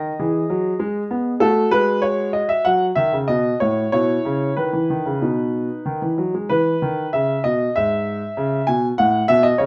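A clear grand piano carries this playful, cheerful classical-period sonatina alone from start to finish, sounding smooth and vintage with a long sustain and sitting up front in the mix. The piece moves at 96 BPM in 4/4 and E major, though the rubato feel lets the pulse breathe, and the instrument is tuned slightly low, with A4 at 438 Hz. Its range stretches from G#2 up to G#5, opening on an Emaj9 colour and passing through F#m and B before a new section begins at 6.5 seconds on a plain E chord. That second passage closes out the short fragment, cut from a longer piece, on an A69 harmony at 9.0 seconds. A light reverb gives the sound a touch of room around its clear, cheerful character.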